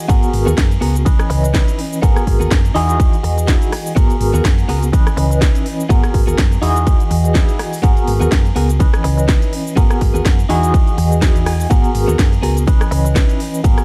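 A punchy, up-front electronic kick drives this funky, nostalgic slice of filtered disco house, with a house kit adding a cracking snare, crisp hats, ride, rim click and shaker in a dry, dark production. A barky, lightly overdriven tine electric piano with fast tremolo and phaser comps over a round, hollow-body fingered bass as both pump against the kick, cycling through G#m9, C#m9 and Emaj9 chords. A twangy, clean, direct-recorded guitar riff pumps along with them and breaks into a short fill at 11.0 seconds.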